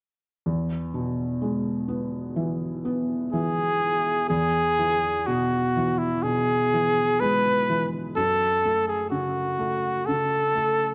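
Gentle and innocent, this slow, rubato children's piece in E major at 62 BPM, cut from a longer work, opens at 0.5 s with a soft, felt-muted upright piano accompaniment, its action noise audible, before a clear, close-miked flugelhorn enters at 3.3 s with a jazz-style solo melody full of vibrato and scooped notes, both parts up front in a dark production bathed in recital hall reverb.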